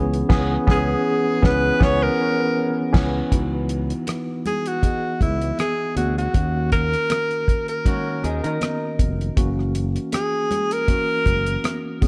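A breathy, subtone alto saxophone with scooped notes, light vibrato and tape echo enters at 0.7 s to lead this smooth, cinematic 1970s-style soul cut at 79 BPM in C# dorian, over a worn, slightly out-of-tune tine electric piano, a growly fingered electric bass and an up-front, cloth-damped thuddy drum kit with a fat snare and dark cymbals, while high-tuned congas join in the background at 3.3 s and a twangy, slightly broken-up electric guitar riff with spring reverb appears at 7.9 s.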